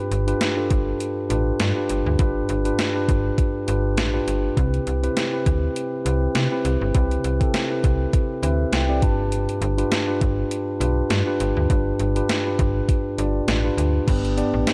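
A lightly swung 16th-note groove at 101 BPM drives this glossy, romantic 1980s-style pop excerpt, where a mellow, clean tine electric piano sits up front over a snappy FM bass with a metallic attack and a thumpy, overdriven 12-bit drum machine of kick, medium-tuned snare, hi-hat and crash, moving from G7 to Cmaj7 and back before resolving to G, with an electric piano fill at 8.1 seconds, all bathed in a dark concert-hall reverb.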